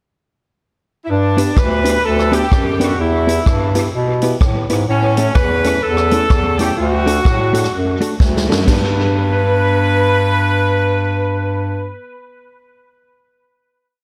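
A small, lightly reverberant room frames this short, cheerful ska piece in G lydian at 126 BPM, swung on the eighths, with tape echo trailing the horns, guitar and drums. After a brief pickup, a tight, up-front horn section with vibrato states a warm, motif-based melody over a smooth-topped bass clarinet walking bass full of slides and chromatic approach notes. Meanwhile a dark, clean hollow-body electric guitar plays off-beat chops, and a punchy acoustic kit drives a bouncy ska beat with a side-stick backbeat until a drum fill at 8.2 seconds leads to the final G chord at 8.7 seconds, held by horns, bass clarinet and guitar.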